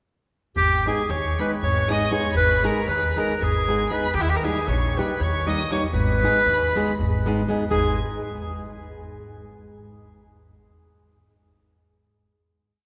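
Bittersweet and virtuosic, this short Balkan wedding-band piece in a straight 7/8 sets a bright, vintage clarinet up front, spinning a classical-style, motif-based melody in period phrases, while a rich, focused violin doubles it an octave higher from a distance with vibrato. Beneath them, an acoustic flamenco guitar, bright and up front, fingerpicks off-beat triad chords with audible finger squeaks, a woody pizzicato upright bass plays root and fifth on the main beats, and a deep clay-shell darbuka with a compressed, saturated sound keeps a two-stick pattern in the background. A cathedral reverb bathes the ensemble in a church-like space as the harmony moves from G#m to D# and back, closing on a final chord held from 7.7 seconds.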